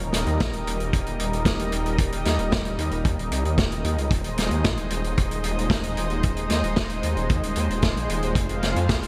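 Driving and cinematic, this synthwave excerpt moves at 113 BPM in a straight 4/4, its harmony passing from Eb to Ab over Eb and then Fm. A lush, warbling pad of detuned sawtooth voices sustains bright chords with a slow attack, while a thick, up-front saw bass with a fast attack anchors the low end, both treated with chorus and sidechain pumping. A vintage acoustic drum kit puts gritty, saturated hi-hat and snare up front, joined by a tight kick with a rolled-off top, under a light reverb.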